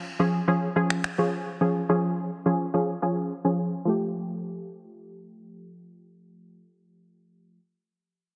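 A lush hall reverb and a dense, heavily limited modern master frame this upbeat, carefree dance-pop fragment, cut from a longer piece, at 106 BPM in a straight 4/4. A punchy, detuned sawtooth chord stab with a vintage, warbling chorus sits up front throughout, its filter sweeping until 3.9 seconds as the harmony moves from Db to Fadd9. Tape-warm, sampler-style electronic finger snaps appear briefly at 0.9 seconds.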